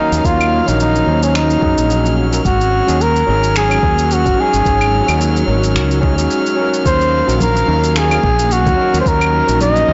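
The recording sounds blown-out and overdriven, with light reverb and nothing above 7.7 kHz. This sunset chillout passage, cut from a longer piece, moves at 109 BPM in 4/4 with a swung sixteenth-note feel in Eb minor, its wistful mood resting on Ebm7, Ab7sus4 and a return to Ebm7. An up-front, warm flugelhorn carries the jazz-style solo melody with light vibrato and digital delay, over a barky, gritty tine electric piano played through a combo amp with a low-pass filter and delay. Behind them, a rich symphonic string section holds biting bowed chords with light vibrato, while a glassy harmonics texture drifts high and bright with chorus and reverb. A round, dark fretless bass sits up front with transformer saturation and analog chorus, and the groove comes from a soft, overdriven electronic kick and layered electronic shaker, claves and finger snaps with studio reverb, joined at 7.4 s by very quiet, ringing congas.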